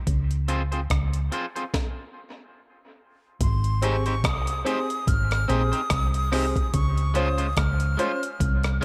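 Dub reggae at 72 BPM in Ab major, spacious and hazy, this excerpt rests on a dark, round, foam-muted electric bass and a gritty, pitched-up sampler-style breakbeat kit with a thumpy kick, while a twangy, slightly broken-up electric guitar steeped in dub echo joins at 0.5 seconds over a filter sweep and break, before a breathy, bright jazz flute with vibrato and chiff takes the melody at 3.4 seconds and a woody upright piano adds short echoing stabs from 3.8 seconds, all moving from Dbmaj7 to Abmaj7 in light digital ambience.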